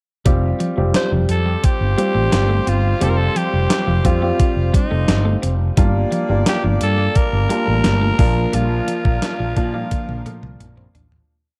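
A raspy, gritty alto saxophone leads this glossy, uplifting 1980s-style pop piece, entering at 1.0 seconds with punchy, motif-based call phrases touched by slapback echo. Beneath it, a clean 12-bit drum machine sits up front with a thumpy kick, medium-tuned snare, hi-hat and toms, its big backbeat sounding re-recorded in a large room, while a growly, amped fretless bass drives a syncopated pop-funk line. A worn baby grand piano adds syncopated close-voiced chords with long sustain, and a bright, twangy twelve-string electric guitar picks a muted single-note riff in the background through analog chorus and slapback echo. From 1.6 seconds a tight horn section, also tucked back with slapback echo, plays swelling long notes with vibrato. The harmony moves from Fsus2 through Gm7 to Bb as the verse fades out from 8.5 seconds, with a drum fill closing it, all framed by light reverb and digital ambience in a dark, warm production.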